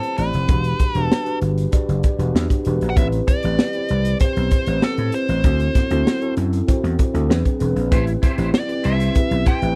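Dry and polished, this nocturnal, bittersweet 1980s jazz-funk pop excerpt at 97 BPM in A dorian sets a nasal, overdriven lead guitar with a parked wah and slapback echo on the melody over a mellow tine electric piano bathed in lush chorus, a gritty, up-front fusion kit with a high-tuned snare and tight kick, and a round, punchy slap bass that enters at 0.2 seconds, while a twangy, slightly broken-up electric guitar riff with ensemble chorus joins at 7.9 seconds as the chords move from Em9 through Am7, D7 and E7b13 to Am7.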